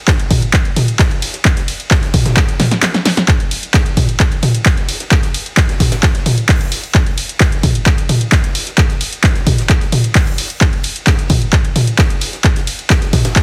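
A heavy, layered electronic kick drum sits up front alongside a punchy, tape-warm analog drum machine of handclaps, hi-hat, ride, snare and toms, driving a relentless, industrial techno groove at 131 BPM with sidechain pumping on its hats, cymbals and toms. Further back, a polished gated 80s kit adds a fat snare and bright, high-passed cymbals and hats that also pump. A drum fill arrives at 2.6 seconds, and the kick drops out briefly from 2.8 seconds, all in a dry, heavily compressed radio-style mix from a longer piece.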